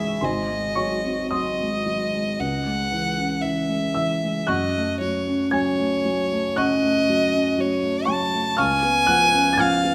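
A moderate recital hall reverb, with a decay of about 1.4 seconds, surrounds this brief romantic classical duo for violin and baby grand piano, cut from a longer piece. The mood is melancholic and yearning, moving slowly at 54-61 BPM in 4/4 with a rubato feel. A single bowed violin carries the melody from C#5 to A5, its tone rich and focused, with vibrato and a close, up-front placement. The piano supplies the accompaniment across a span from G#1 to A6, its dark, mellow sound intimate and smooth, with a vintage character and audible action noise. Both instruments play together throughout the 9.9 seconds, over harmony that moves from G#7 through C#m and F#m to C#7 at 8.6 seconds.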